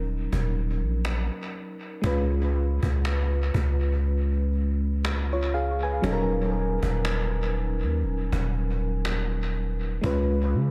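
Longing and moody, this slow contemporary R&B excerpt moves at 60 BPM in 4/4 with a swung sixteenth-note feel, set in Eb minor and tuned slightly sharp to A4 = 441 Hz. A mellow FM electric piano carries the accompaniment up front throughout the 10.7 seconds, its round, dark, vintage tone warbling under chorus and tremolo, with a noise layer and dub echo trailing each fast-attack, decaying note. Beneath it, a long sustained 808-style bass sits up front with a deep, sine-like body that strikes quickly and then fades. A cajon played with soft hands adds woody, acoustic percussion with faint snares, placed distant as if in a large room and repeated through dub echo. The harmony rocks between Ebm7 and Db7, and the whole mix is steeped in echo over a small room ambience.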